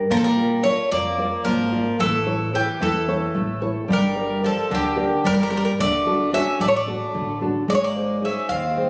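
Greek folk in a cool, brooding mood, this short cut from a longer piece moves in 7/8 at 222 BPM counted in eighths, with a straight feel. A fingerpicked nylon-string guitar opens at 0.0 seconds and sits up front with a dark, classical tone, the faint squeak of fingers on strings audible as it accompanies. From 0.1 seconds a bright, metallic bouzouki carries the melody up front, its picked double strings ringing with some octave doubling, while a second bouzouki plays a lower line beneath it at a softer level. An upright bass, plucked on gut strings with a woody, thumpy sound, anchors the low end more quietly still. The harmony passes through Bb, A, Gm, D and Ab, and the whole is heard through a moderate plate reverb and compression, with the roomy character of a phone recording.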